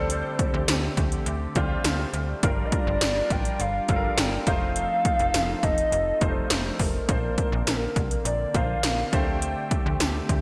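Bright, glossy digital production with a lush hall reverb gives this short cut from a longer 1980s-style pop piece a dramatic, nostalgic glow. Punchy electronic drums enter at 0.1 s and sit up front, their gated snare, metallic hats, tambourine and kick roughened by overdrive and a small-room character. Underneath, a snappy FM bass with a fast, decaying attack anchors the low end, while a clear, polished baby grand piano with ensemble chorus plays the accompaniment. A shimmering pulse-width pad with a slow attack and long release holds sustained chords in the background. Over the top, a hollow, woody clarinet-like synth lead carries the melody with gentle vibrato, chorus and digital delay as the harmony moves from D7sus4 through Gm7, F7 and Bbadd9 before returning to D7sus4.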